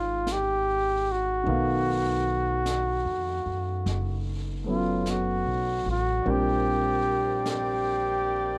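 Swung eighths in 4/4 carry this intimate, melancholic jazz ballad fragment, where an up-front, warm flugelhorn sings the melody with light vibrato and scooped notes over a long-sustaining grand piano and a woody, thumpy pizzicato upright bass; distant brushes on a high-tuned snare and hi-hat join at 0.3 seconds, and a soft-attacked, roomy saxophone section adds sustained chords from 6.2 seconds as the harmony moves from Dbadd9 through B7#11 to Bb69, all within a small room's ambience.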